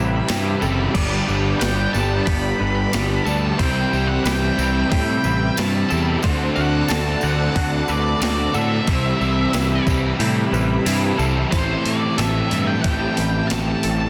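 A gated 80s drum machine with a thumpy kick and gated-reverb snare drives this wistful, dreamy shoegaze excerpt alongside a jingly background tambourine and an up-front fuzz picked bass, while a biting overdriven guitar with reverse reverb, a dark double-tracked overdriven guitar and a hollow-body semi-hollow guitar with ensemble chorus stack their riffs alongside a very quiet twangy clean guitar's arpeggios and a shimmering vintage string machine's sustained violin chords; a distorted octave-fuzz lead guitar carries the melody with slapback echo from 1.6 seconds, and the kick and snare drop out from 10.2 to 11.5 seconds in a dense, heavily limited mix.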